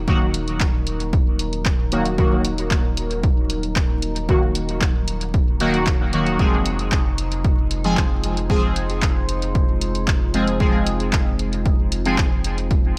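Under a layer of vinyl crackle and light reverb, this deep, cavernous dub techno cut moves at 114 BPM in Eb dorian, shifting from Ebm to Fm at 6.4 seconds: a punchy, up-front analog kick and a drum machine's handclaps and hi-hat with dub echo, both re-recorded in a large room, play alongside a round, soft sub bass, while bright, warbling polysynth stabs with a resonant filter sweep, phaser, cassette tape character and dub echo sit forward over a moody, evolving detuned pad and an eerie, nasal metallic FM drone in the background, with the pad, bass, drone and stabs all pumping to the sidechain.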